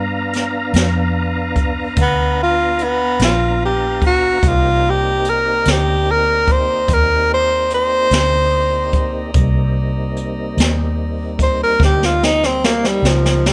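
Slow blues in C minor, this mournful, smoky excerpt moves at 49 BPM in a straight 12/8 feel. A tonewheel organ holds sustained chords through a slow rotary speaker and chorus vibrato, while a distant, roomy horn section sits in the background with its own soft chordal pad. A vintage fingered electric bass, dark and foam-muted with a round, amped tone, anchors the low end, and a jazz brush drum kit enters at 0.3 seconds, up front in a small room with a medium-tuned snare, boomy kick and hi-hat. At 2.0 seconds a breathy tenor saxophone takes the solo melody, close-miked and intimate, with subtone, light vibrato, soft attacks and scooped notes, set in plate reverb. The harmony shifts from G7#9 to Cm9 at 4.4 seconds, and the drums play a fill from 11.8 seconds to the end of the cut.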